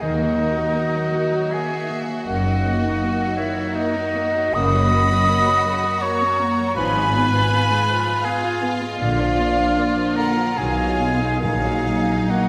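Elegiac and melancholic, this slow, romantic orchestral passage in 3/4 moves with a rubato feel at roughly 68-84 BPM and is cut from a longer piece. A distant, intense violin section carries the melody with vibrato while a focused, close second violin section, a pure straight-toned flute and a solo oboe with a smooth top weave second lines above a bed of rich background violas, a tight French horn section holding sustained chords, a ringing thumb-plucked harp playing arpeggios, and rich cellos and double basses on the bass until 12.1 s. Very quiet timpani with medium mallets enter only at 11.4 s, and the whole ensemble sits in a wet scoring-stage reverb.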